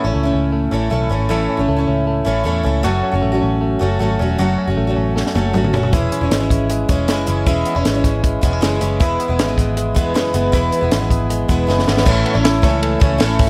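Light reverb gives this short cut from a longer jangly indie pop piece an airy, open sound, and its straight 4/4 pulse carries a wistful, bittersweet mood. An up-front picked twelve-string acoustic guitar handles the accompaniment with a shimmering, octave-doubled sparkle of fresh strings, while a clean, twangy electric guitar recorded direct adds compressed arpeggios through tape echo. Underneath, a vintage foam-muted electric bass sounds round and amped, sitting up front in the mix. A compact cocktail drum kit enters with a fill at 5.2 seconds, dry and close, with dark cymbals, a high-tuned snare and a punchy kick. The harmony moves from A through F#m and C#m/E to E, and a second drum fill at 11.7 seconds leads into a new section at 12.1 seconds, where the chords return to A.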